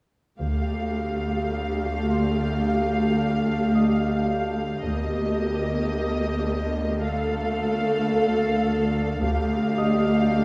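A tense, ominous cinematic passage cut from a longer piece opens at 0.4 s with a full bowed string section moving at a slow 54 BPM in a straight 4/4. Lush violins carry the smooth, vibrato-rich melody between Eb5 and F5, sounding distant, while the violas sit close with soft attacks, expressive portamento and a gentle warmth. Beneath them, cellos and a clear-toned double bass section hold a low D2 pedal, the cellos full and even with a smooth top. At 1.5 s a calm, nasal organ-like drone joins on the same D2, fading in slowly under its own chorus and reverb, and at 2.1 s a thumb-plucked concert harp adds ringing notes high in the background. The harmony drifts from Fadd9/D through Eb/D and Dm before returning to Fadd9/D, all heard from further back in a reverberant concert hall.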